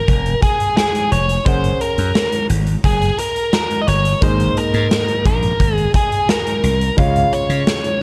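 1980s-style pop with an uplifting, nostalgic mood, moving at 87 BPM in Ab mixolydian, cut from a longer piece. An overdriven, biting lead guitar carries the melody up front over a clear, vintage grand piano with short sustain, while a glassy, punchy slap bass and a big rock drum kit with a medium-tuned snare and a punchy kick drive the groove through chords from Absus2 to Gbadd9, back to Absus2 and on to Db at 7.0 seconds. The production is dark and warm, with light reverb and a small room ambience.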